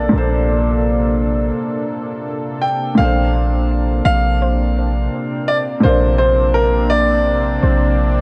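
Romantic and dreamy, this short cut from a longer contemporary R&B piece moves at 84 BPM in Bb major, opening on a lush Bbmaj9 chord. A clear concert grand piano carries the melody up front, its natural tone touched by analog delay, while a felt-muted upright piano fills in the accompaniment with a soft, intimate, mellow voice. Beneath them, a smooth analog pad holds sustained chords, its detuned sawtooth character shimmering with chorus and tremolo. A boomy 808-style bass anchors the low end on Bb1, sitting up front with a fast attack that decays into a deep, warm sine tone. In the background, a gentle, dark pluck adds texture with chorus and analog delay, and the whole mix is echo-heavy with light studio reverb, with a break arriving between 1.6 and 3.0 seconds before the music moves into a new section at 3.0 seconds.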